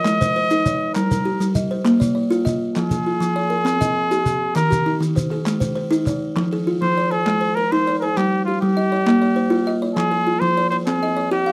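Southern African traditional music in a rippling, hypnotic mbira-style interlocking cycle at 133 BPM in 12/8, where a buzzing, woody kalimba's bright thumbnail-plucked arpeggios and a warm, classical-style solo trumpet melody sit up front over hollow group handclaps in the background and a grainy shekere that drops out at 6.2 seconds, all in a dark small-room sound cut from a longer piece.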